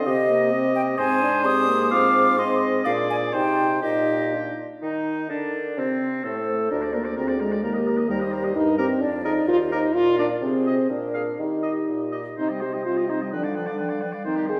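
A quick classical-period movement for wind quintet in Eb major, this short excerpt moves at 128 BPM in 2/4 with a rubato feel and a dramatic, urgent mood, opening on C minor harmony before turning through other chords and returning to C minor near the end. A hollow, airy silver concert flute carries the melody from 0.1 seconds, its soft attack and vibrato heard close-miked against the ensemble. Beneath it, a clear oboe sings a second line from a more distant, roomy position, while a smooth-topped clarinet sits in the background as accompaniment. The French horn, warm with light vibrato, stands up front in the accompaniment, and a mellow bassoon with its own light vibrato anchors the bass. All five players sound together throughout, set in a wet scoring-stage reverb of 1.6 seconds and heard from further back in the room, lending the quintet a spacious, slightly removed presence.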